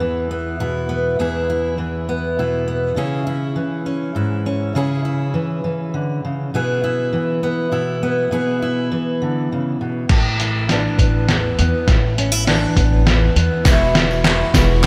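A bright, full-bodied fingerpicked steel-string acoustic guitar opens this anthemic, uplifting indie folk fragment in 6/8 at 67 BPM in A major, and at 10.1 seconds a build-up begins as woody, dark pizzicato upright bass and an up-front, muffled, compressed lo-fi drum kit with a thumpy kick and fat snare enter on a drum fill, before a shimmering, octave-doubled twelve-string guitar with slapback echo, crisp distant handclaps and a jingly background tambourine join at 13.7 seconds, within a lush hall reverb and a big arena sound.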